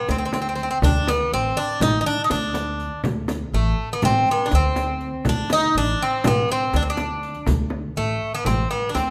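This Turkish makam ensemble piece in D makam hicaz moves at a festive, stately pace of 244 eighth-note beats per minute in a straight 9/8, a short cut from a longer performance lasting about 9 seconds. The Greek bouzouki carries the melody from the very start, sitting up front with a bright, metallic, picked tone from its double strings, some of them octave-doubled, ranging from A3 to Eb4. Entering at 0.1 seconds, the pizzicato upright bass supports it in a low register between A1 and D2, its steel strings giving a woody, warm sound. A small frame drum played with soft hands sounds close and dry, while the riq's dark jingles sit in the background. The whole acoustic group is heard in a moderate recital hall with a reverb time of 1.4 seconds.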